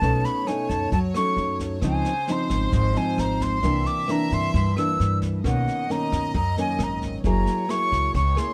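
Bossa nova at 133 BPM in a straight 4/4, relaxed and breezy, with an airy, up-front concert flute carrying the melody with vibrato and a soft attack over thumb-plucked nylon-string guitar, a woody, thumpy pizzicato upright bass, and brushes on a small-room kit with a boomy kick, rim click and snare. A floating, sul tasto violin section adds a pure, quieter second line beneath the flute. The chords move through B9, Dbmaj9, C9, Bmaj9 and Gb9 in this dry, closely miked excerpt cut from a longer piece.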